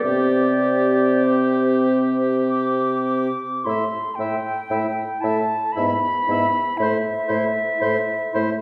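In a rubato 3/4 that drifts between 45 and 60 BPM, this slow romantic movement for wind quintet unfolds in a lyrical, serene mood, cut from a longer piece. The concert flute carries the melody up front with a pure, straight, tongued tone between C5 and D6, while the oboe sings a second line below it with a warm, lightly vibrato, soft-attacked sound that sits more distant in the room. The clarinet's clear accompaniment rests in the background, the French horn adds mellow, vintage-toned support, and the bassoon anchors the bass with a smooth top. The music settles into A minor at 3.7 seconds as the second section begins, moving through E/G# at 5.8 seconds before resolving to A minor at 6.8 seconds. A wet recital-hall reverb places the ensemble further back in the space, lending the classical-style playing a gentle, roomy bloom.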